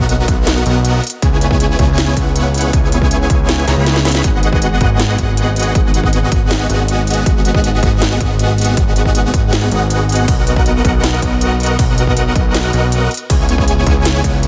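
Set in a digital ambience, this emotional, bittersweet future bass excerpt rides a half-time feel, led by a huge, detuned supersaw riff with 12-bit sampler grit, sidechain pumping and digital delay, over a fat analog sawtooth bass that also pumps and carries a filter sweep, a punchy overdriven electronic kick, and a trap kit of crisp hi-hats, ride cymbal and sharp snare, with a drum fill arriving at 3.7 seconds, while the chords move from Bmaj7 through C#m7 to G#m7.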